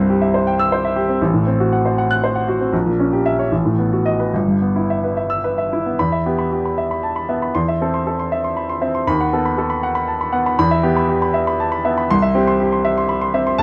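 Swaying in a lilting 6/8 with free, elastic rubato, this passionate classical piano study unfolds in a stormy, restless mood. A solo grand piano carries everything, its clear, present tone sitting up front and ranging from a deep G1 bass to bright F#6 heights. The harmony darkens early through diminished chords and a dominant seventh before settling onto the home minor chord. At 6.0 seconds the opening idea returns, now moving through a more direct minor-key cadence before turning toward a C major chord at 12.1 seconds. Light reverb and a dark, warm production frame the instrument in this short passage cut from a longer piece.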